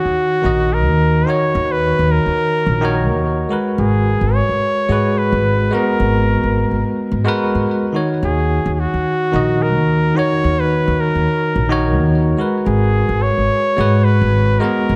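Sunset chillout in Eb minor at 108 BPM, with a gently swung feel and a wistful, smooth mood, moving between Ebm7 and Abm9 across this short excerpt cut from a longer piece. A soloing flugelhorn, close-miked and punchy with light vibrato, carries the melody through tape echo, while a bell-like tine electric piano, bright and clean, accompanies it with its own tape echo. A woody, dark pizzicato upright bass enters at 0.1 seconds, and all three parts sit up front in a small room with light reverb.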